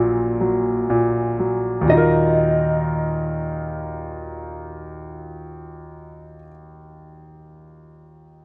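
Melancholic and longing, this short fragment of a slow pop piece in Eb minor moves at 59 BPM in a straight 4/4, easing in tempo over its first 1.9 seconds as the harmony shifts from Gb/Bb to Ebmadd9. A mellow, dark electric guitar carries the melody with a clean, fingered, compressed tone, colored by lush chorus and slapback echo. An up-front concert grand piano with deep bass and short sustain accompanies it and continues alone from 6.4 to 8.4 seconds, all in a dry, close 1970s-style studio sound with light reverb.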